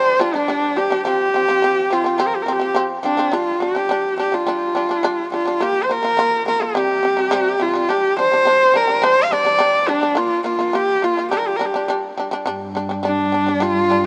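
A husky, focused horsehead fiddle opens this excerpt of Mongolian folk music, carrying the melody up front with vibrato and portamento while a shamisen plays plucked arpeggios beneath it. The shamisen sounds percussive and buzzing, its fretless tone powerful and close. Set in a straight 4/4, the pairing feels vast and solemn, with a huge ambient reverb giving the sound a spacious depth. At 12.5 seconds a muted cello enters on a low drone, its veiled, nasal and boxy tone adding a dark undercurrent until the fragment ends at 14.1 seconds.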